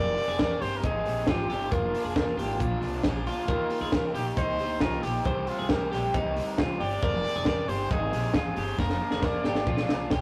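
A straight, steady 4/4 pulse drives this short clip of youthful, bright, jangly indie pop, cut from a longer piece. A compact cocktail drum kit enters at 0.2 s with hi-hat, a punchy kick and a high-tuned snare, sounding dark, smooth and up front, and it plays a drum fill from 8.8 seconds to the end. Beneath it, a pizzicato upright bass with steel strings gives a woody, growly low end, while a clean, compressed twelve-string electric guitar picks twangy, bright arpeggios and a raw garage guitar adds overdriven, picked accompaniment. Over the top, a trumpet carries the solo melody in a pop style with light vibrato and a warm tone. The harmony moves from Fmadd9 through Bb/F, Eb and Cm before circling back, and the whole take sits in a rough rehearsal-room recording with warm saturation and a moderate stone-room reverb.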